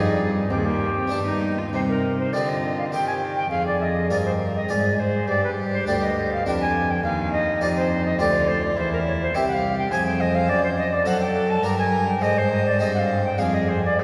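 An alto recorder carries the melody up front with a pure, chiffy wooden tone and vibrato, joined by a gut-strung period violin on a reedy second line, a brilliant Italian-style harpsichord filling in the accompaniment, and a close, rich-toned cello holding the bass, all four playing throughout this 14-second excerpt. It is a solemn, introspective baroque-style sonata movement in C minor and 3/4 at 103 BPM, played with rubato and washed in a long, wet cathedral reverb. The harmony moves through F minor and G toward a darker turn on D7/F# and A-flat before settling on a diminished chord at 13.4 seconds.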